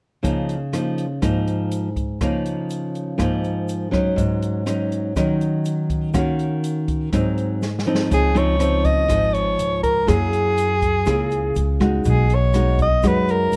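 A fingerpicked nylon-string guitar opens this romantic, breezy bossa nova excerpt in Db major at 122 BPM, its dark, full-bodied classical tone sitting up front with audible finger squeak as it moves through chords like Db69 and Ebm7. An airy, polished jazz drum kit plays alongside from the start, with hi-hat, rim click, a medium-tuned snare and a boomy kick, while a grainy egg shaker sits very quietly in the background. A drum fill at 7.6 seconds leads into a new section at 8.1 seconds, where a woody, growly pizzicato upright bass and a soprano saxophone enter together. The saxophone carries the melody up front, its warm subtone and vibrato giving a jazz-style solo voice over lush harmonies such as Dbmaj9 and Gb9. Light reverb and a dark, warm production round out the sound.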